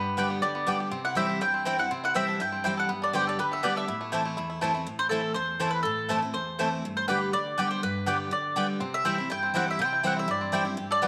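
A twangy, percussive bluegrass banjo and an up-front, woody mandolin open this lonesome, rustic bluegrass excerpt together, picking the melody over a full-bodied dreadnought guitar accompaniment that moves through G, C and Am. A second mandolin adds picked stabs with a slapback echo from 0.2 seconds. The banjo drops out at 4.9 seconds and returns at 8.8 seconds, all set in a moderate echo-chamber studio ambience.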